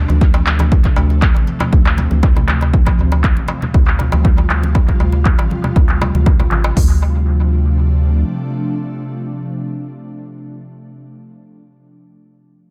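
Afro house at 119 BPM in D minor pentatonic, this driving, spiritual excerpt moves from Dm7 to Fsus2 over an ethereal, detuned pad with ensemble chorus and sidechain pumping, and a round, deep analog bass sits up front until 8.2 seconds. A punchy deep house kit with smooth hats and toms, under a filter sweep, leads layered electronic shaker and handclaps, background congas and a crisp metal-shell darbuka, all three carrying tape echo. The percussion drops out around 6.8 seconds, leaving the pad and bass to ring on over a returning Dm7 in a dry, echo-heavy mix.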